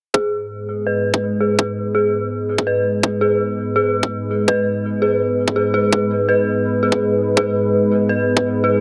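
A dark, detuned synth bell and an overdriven electronic kick open this heavy, spacious stretch of half-time drum and bass together at 0.1 seconds, cut from a longer piece. The bell plays eerie, inharmonic FM arpeggios with a fast attack and decaying tail, colored by chorus, phaser and dub echo, while a filter sweep runs across it for the whole stretch. The kick is tight, layered and up front, shaped by a high-pass filter. At 0.5 seconds a deep, moody analog pad enters with sustained chords built from detuned sawtooth and triangle tones over a sub octave, swelling in slowly and releasing long, with chorus and sidechain pumping giving it movement. The whole passage rests on a single minor chord, and a lush hall reverb of moderate size opens up the space around the parts.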